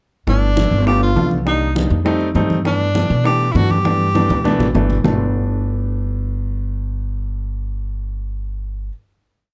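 A bright tenor saxophone carries the melody up front with vibrato and a soft attack, spinning a motif-based line in period phrases over a lively, danceable Afro-Cuban jazz groove at 201 BPM in G major. A warm grand piano supplies syncopated stabs in rootless voicings, while a woody, thumpy upright bass plays a tumbao that anticipates the chords, and low-tuned congas with slaps and open strokes sit distant in a large room beside round bongos in steady eighths with a hand bell in the background. A drum fill runs from 3.9 to 5.0 seconds before the piece settles onto a final chord, with piano and bass sounding until 8.9 seconds.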